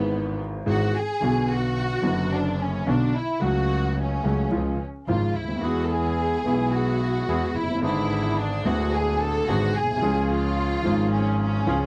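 Tango at 109 BPM in a rubato 4/4, nostalgic and passionate, where a lush bowed violin section with smooth vibrato carries a solo line up front over vintage grand piano accompaniment and a focused, clear bowed double bass, joined at 5.6 seconds by reedy, band-limited bandoneon stabs with slapback echo, all in a dry, close 1970s-style studio sound with light reverb and vinyl crackle, moving through chords such as E/G#, Bm, G#dim and C# in this brief cut from a longer piece.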